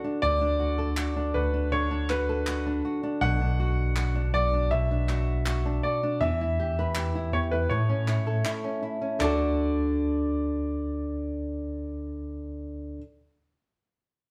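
A band playing together in one studio room, with a moderate reverb, performs this short fragment of easy-going, carefree acoustic pop. A fingerpicked flamenco guitar carries the accompaniment up front beside a mellow tine electric piano that sounds through its built-in speakers to play the bass, while a clear, woody upright piano with an intimate, natural tone, its action noise audible, sings the melody in a high register. Crisp human handclaps join at 1.0 s and drop out at 9.6 s as the chords move from D through Bm, Em and A before settling back on D.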